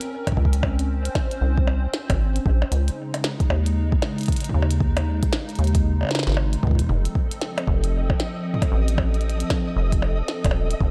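Dark, digital ambience frames a cerebral, intricate IDM fragment with a swung 16th-note feel, where a rubbery, saturated acid bass and a deep, up-front electronic kick sit beneath a glitchy kit of clicky hats, tiny snare, toms and percussion blips soaked in dub echo, while a hollow, flute-like pad warbles with vintage chorus and a flickering, grainy granular texture slips in at 7.2 seconds.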